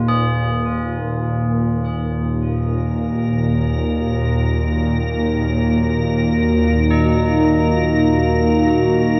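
A tense, string-like drone in the low register opens the piece at 0.0 seconds, sitting up front with a nasal, detuned edge, vibrato and its own reverb. Beside it, quiet tubular bells play solemn, metallic arpeggios in a diffuse ambient delay, their ringing tone carrying a boxy small-room character. At 3.1 seconds an icy, crystalline glass pad slips in on a single airy sustained note with chorus, and at 3.4 seconds a deep, moody analog pad joins with slow-attack sustained chords, colored by chorus and phaser. This is an ominous, desolate dark ambient drone in free time and Eb minor, resting on an Ebmadd9 harmony. The whole passage sits in a cavernous cathedral reverb, and it is cut from a longer piece.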